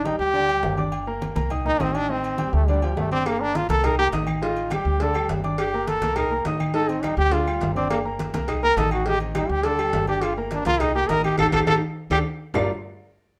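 A bright, punchy trombone solo with vibrato leads this passionate, driving salsa excerpt from the start over a clear, intimate grand piano with audible action noise, a woody pizzicato upright bass, low-tuned thin-skinned congas and ringing timbales with agogo bells in the background; tight, high-tuned cowbell and bongos and distant claves join at 3.3 seconds, and a drum fill with a band accent arrives at 11.4 seconds, all in a moderate studio reverb.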